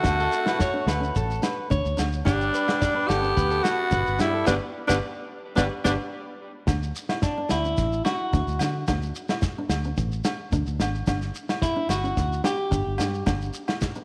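A growling alto saxophone opens this sunny highlife guitar band excerpt, leading the melody up front with a raspy, gritty edge while a mellow trumpet with light vibrato and scooped notes traces a second line in the background, both playing only until 5.9 seconds. Underneath, at a straight 109 BPM in D major, a fingerpicked steel-string acoustic guitar adds dark, full-bodied accompaniment, and an electric guitar at the edge of break-up spins twangy arpeggios through tape echo. A round, foam-muted fingered electric bass sits up front against a soul drum kit with a tight kick and medium-tuned snare, while ringing agogo bells and a grainy, dry shekere fill out the percussion. The band hits an accent from 4.5 to 6.7 seconds, and then a clean electric guitar solo takes over from 6.7 seconds to the end. A moderate echo chamber reverb gives the whole a roomy glow.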